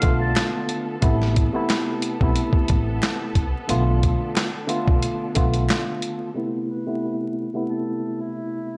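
Vinyl crackle and a worn, slightly out-of-tune tine electric piano open this tough, moody boom-bap hip-hop excerpt, with a brief phrase of muted trumpet at the start. A compressed, muffled sampler-style drum kit sits up front with a thumpy kick, a medium-tuned snare, hi-hat and handclaps, all re-recorded in a large room, while a woody, dark pizzicato upright bass anchors the low end and very quiet finger snaps add a small-room, human touch. Lush bowed strings hold smooth, close chords underneath, and the lightly overdriven piano carries a cassette-tape grit over a light swing. The drums, bass, snaps and strings drop away by about 6.3 seconds, and from 6.4 seconds a filter sweep runs to the end. Over that sweep the buzzy, thin muted trumpet returns at 6.7 seconds with a jazz-style solo line, its light vibrato and soft attack trailed by delay.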